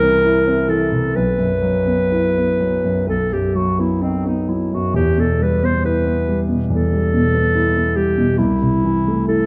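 Set in a moderate recital-hall reverb with a dark, warm production, this brief romantic classical passage for clarinet and grand piano feels solemn and melancholic, moving in a rubato 4/4 at roughly 61-72 BPM in E minor. The mellow, vintage-toned clarinet carries the melody up front in its lower-middle register, while the concert grand supplies a shadowy accompaniment with deep bass. The harmony passes from C7 through Bsus4 and B to settle on E minor near 4.9 seconds before turning to Am/C, and the fragment is cut from a longer piece.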